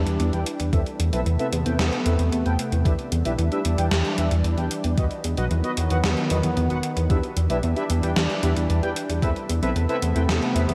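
A bright, 1980s-style digital production set in a lush hall reverb opens this nostalgic, nocturnal synthwave excerpt in E minor at 113 BPM, moving through Em7, Amadd9 and B chords in a straight 4/4. A detuned sawtooth pad holds thick, sustained chords under chorus, sidechain pumping and shimmer reverb, while an up-front, glossy synth bass with tube saturation and ring-modulated, wave-folded tones anchors the low end. A gated 80s drum machine brings overdriven hi-hat and gated-reverb snare from 0.1 seconds, mellow, brassy synth stabs with vibrato, delay and chorus sit above, and a thumpy, overdriven electronic kick drives the groove from 0.7 to 9.3 seconds.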